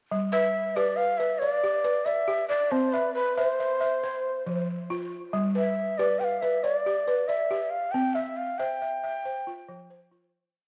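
Recorded at home on cassette, this piece sits in a moderate, lush hall reverb, giving a warm, flowing West African string-and-xylophone feel in a straight 12/8 at 92 BPM, in G mixolydian over chords moving between G, C and F5. Up front, a woody, buzzing balafon struck with soft rubber mallets plays a vintage, band-limited interlocking arpeggio ostinato. A breathy, mellow shakuhachi, close-miked with a crisp chiff and a touch of tape echo, carries a motif-based song melody as the whole piece fades out from 7.9 seconds to its close at 10.5 seconds.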